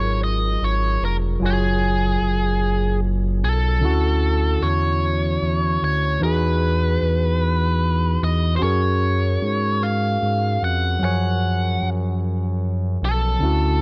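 A biting, overdriven lead guitar carries the melody up front from the opening, over a barky tine electric piano pushed lightly through a combo amp and a smooth, gliding synth bass with vibrato and portamento that sits loudest in the mix. This tender, intimate slow six-eight R&B moves at 50 BPM in F# major, drifting through F#maj9, Dmaj9 at 3.8 seconds and Emaj9 before returning to F#maj9 at 8.6 seconds. The production is dark and warm, with little reverb, and the 13.8-second excerpt is cut from a longer piece.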